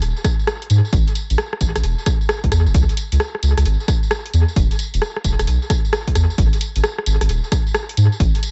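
This short cut from a longer UK garage track opens straight away with a soft dub sub bass and an analog drum machine. The sub sits deep and round between Eb1 and Ab2, with a fast attack and sustained notes that blend triangle and square wave tones. The drum machine supplies hi-hat, rim click and tambourine, its hits trailed by dub echo. At 0.2 s a punchy electronic kick drum arrives, and both kick and drum machine carry a tape-warm analog character, while kick and bass sit up front to drive a two-step groove at 132 BPM in 4/4 with 65% swing on the sixteenths. The mood is soulful and sunny, and the mix uses little reverb but heavy echo, with nothing above 8.0 kHz, before the passage cuts off at 8.5 s.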